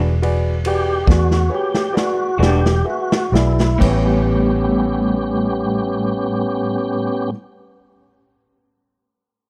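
A slow 12/8 blues moves at 41-48 beats per minute with a straight feel in A mixolydian, easing back in tempo through its first 3.8 seconds. This short cut from a longer piece has a laid-back, swaggering mood as the harmony shifts from E9 to A9. A tonewheel organ enters at 0.7 seconds and takes a solo in the opening section, its full chords sitting up front with light overdrive, key click, chorus vibrato and a slow rotary speaker. The raw garage drum kit, with a punchy kick, medium-tuned snare, crash and ride, plays a fill before it stops at 4.0 seconds, heard in a bright stone room with a rolled-off top. Underneath, a foam-muted fingered electric bass gives a round, dark, amped low end. An upright piano adds warm, woody accompaniment, and an electric guitar through a small old amp supplies slightly broken-up, compressed picked accompaniment with tremolo, all captured in a dry, close 1970s-style studio sound.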